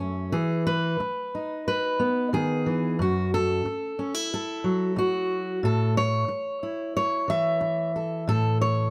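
A straight 4/4 pulse at 91 BPM carries this short folk passage, cut from a longer piece, for solo fingerstyle acoustic guitar. The single fingerpicked steel-string dreadnought sits up front from start to finish, its fresh strings set against a warm body. Its range reaches from F#2 in the bass to E5 at the top. The harmony moves from Emaj7 at 0.3 seconds to F#m7 at 3.0 seconds and settles on A at 5.6 seconds, a progression that leaves a melancholic, wistful mood. A moderate studio reverb adds a short, natural sense of room around the instrument.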